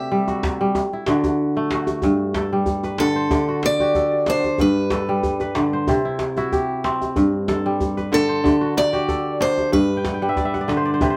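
A warm, hypnotic stretch of West African string and xylophone music, cut from a longer piece, moves at an unhurried walk in a straight four. The kora carries the arrangement with ringing, fingerpicked arpeggios that span from deep bass to high treble, crisp and up front, and it closes with a fill from 10.0 seconds. Alongside it, a picked steel-string parlour guitar with old strings sings a compact melody in a woody, boxy voice that sits just as close to the listener. A djembe joins at 0.3 seconds, tight and cracking under soft hands, its metal rattles colouring a band-limited, vintage tone that stays further back. After a brief opening passage, the music settles at 2.0 seconds into a longer section that cycles through simple C, D and G changes, all held in a light reverb.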